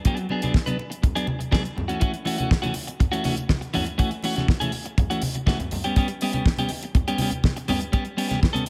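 A light reverb and a sense of studio ambience frame this short disco excerpt, cut from a longer piece, with its danceable, driving mood in a straight 4/4 feel. A damped 70s drum kit sits up front throughout, its dry hi-hat, tight kick and fat snare sounding acoustic and close. A clean electric guitar enters at 0.1 seconds as accompaniment, picked in the range from E3 to B4, its dark, scooped, compressed tone also placed forward and given a touch of spring reverb. Congas join at the same moment, further back in the mix, low-tuned yet bright with a thin skin and a saturated edge. The harmony moves from Bm6/F# to F#m7/E at 1.8 seconds, then settles on a rootless A9/G at 5.7 seconds, all within a single section.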